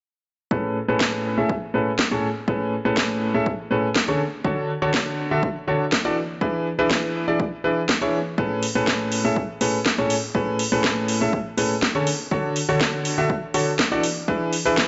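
In straight 4/4, this euphoric, uplifting piano house excerpt rides on a punchy, tape-warm electronic kick with a high-pass filter and small-room ambience, joined at 1.0 s by a layered garage kit of cracking snare and metallic hi-hats set up front, while a brilliant yet worn grand piano riff cycles through Amaj9, Dmaj7 and E7, pumping under sidechain compression and shaded by a low-pass filter and digital delay beneath light reverb.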